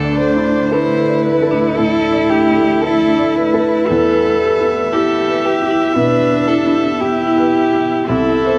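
Rubato and unhurried in 4/4, this short cut from a longer neoclassical piano-and-strings piece feels longing and melancholic, drifting from Dsus2 to E minor and touching C at the close. A dark, sul tasto violin carries the melody with light vibrato and plate reverb, while an up-front cello sings a smooth second line and an airy-bowed viola and felt-muted upright piano add intimate, mellow accompaniment. Behind them, a blurred, evolving granular pad holds sustained chords, and a marimba with medium mallets ripples arpeggios from 0.2 to 8.2 seconds, all set in a moderate large studio reverb with a dark, warm production.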